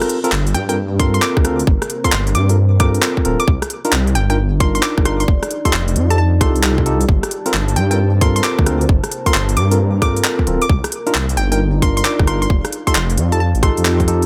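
Skippy and moody, this 14.3-second excerpt of two-step UK garage in G minor swings at 133 BPM, with an overdriven, up-front electronic kick, a crisp-hatted garage kit of handclaps, hi-hat and rim click re-recorded in a large room, a deep, rumbling detuned saw bass pumping under sidechain from 0.3 seconds, clean tine electric piano stabs through digital delay, a hollow, nasal square pluck melody with chorus and delay, and a very quiet, warbling vintage pad entering at 1.3 seconds, all moving through Gm11, Cm11 and F9 under light reverb.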